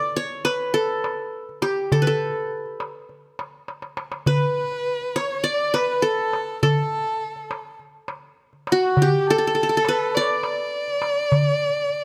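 A crisp metal-shelled darbuka and a bright-edged, plectrum-plucked qanun open this festive, stately Arabic maqam ensemble excerpt in a straight 4/4, and after a drum fill a close, expressive bowed violin with vibrato and portamento joins at 4.3 seconds as a second line, all captured up front with close, detailed microphones and light reverb.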